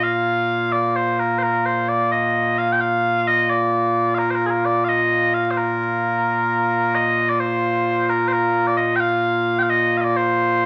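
Ceremonial and proud, this short cut from a longer Scottish traditional piece in a straight 6/8 features mellow small bagpipes alone and up front, their sweet, continuous tone touched with vibrato, moving into a second section at 6.9 seconds, all set in a wet studio reverb beneath a vinyl crackle.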